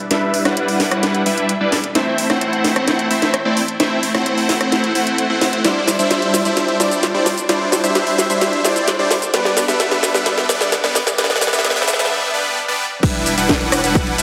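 Powerful and emotional, this short festival progressive house clip, cut from a longer piece, is almost entirely a build-up in a straight 4/4 metre. Huge, bright supersaw chords, detuned sawtooth voices stacked in unison, sit up front with sidechain pumping and digital delay while a filter sweep runs across them, moving through Em7, Am, Cadd9 and G/B. Beneath them an overdriven, up-front house drum kit carries a long fill of cracking snare, hi-hat, rim click, shaker and crash cymbal, with a deep, thick, saturated sine sub bass sitting very quietly underneath. After a brief break at 12.1 seconds, the drop lands at 13.0 seconds on Em7, where a punchy, overdriven electronic kick drum joins for a single second. The whole mix is bathed in a lush hall reverb and squeezed into a heavily compressed, radio-style sound.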